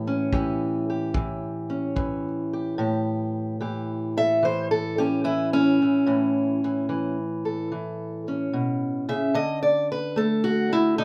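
A dark, woody fingerpicked steel-string acoustic guitar opens this swaggering, rollicking country blues fragment in A mixolydian, swinging at 73 BPM in 4/4 over an A7 chord, with a tight, rolled-off kick drum played with brushes sitting just behind it from 0.3 to 2.2 seconds. From 2.8 seconds the guitar carries on alone as a solo, its old strings and boxy, parlour-style tone set up front in a small room, before the harmony shifts to D5 at 9.3 seconds.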